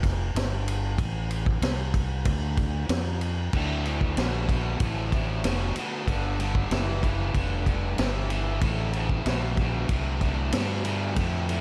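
A dry, close-up recording with very little reverb captures this smoky, gritty slice of blues rock power trio and southern rock in a straight 4/4 feel. From the start, a growly, fuzz-soaked fingered electric bass with overdrive sits up front beside a vintage drum kit with a punchy kick, high-tuned snare, dark crash and ride cymbals and a rolled-off top. At 3.5 seconds a bright, double-tracked distorted electric guitar enters with a picked, overdriven riff over chords moving from Dm through G5 and back to Dm7.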